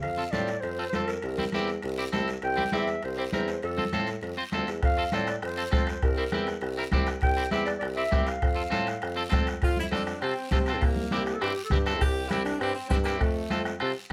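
A breathy, whispered clarinet carries an intimate jazz-style solo through the opening of this sunny, danceable cumbia, its scooped notes and light vibrato sitting over a dark, punchy bassoon bass line and a bright, clean picked electric guitar. Raspy guiro, ringing timbales and soft-handed congas with a thick-skinned tone keep the groove moving, and a soft-beater bombo joins at 4.8 seconds. At 9.6 seconds a clear, close-miked saxophone section takes over the melody with a soft attack and vibrato, all within a moderate studio ambience in this excerpt cut from a longer piece.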